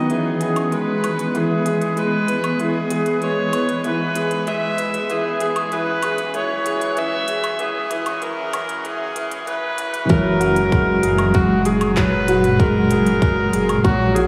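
Hopeful and tender, this excerpt of piano and strings electronica moves at 96 BPM in F# mixolydian, built around a clear, boxy baby grand riff with analog chorus and tape echo, beside an earthy, biting bowed viola melody with light vibrato and its own tape echo. Beneath them sit a blurred, evolving granular pad and a deep, detuned saw bass kept in the background, both pumping to the sidechain, while an overdriven electronic kit of crisp hi-hat, handclaps and woodblock plays from 0.1 s. After a build-up with a filter sweep, the drop lands at 10.1 s as a tight, overdriven electronic kick enters, inside a dreamy mix soaked in cathedral reverb.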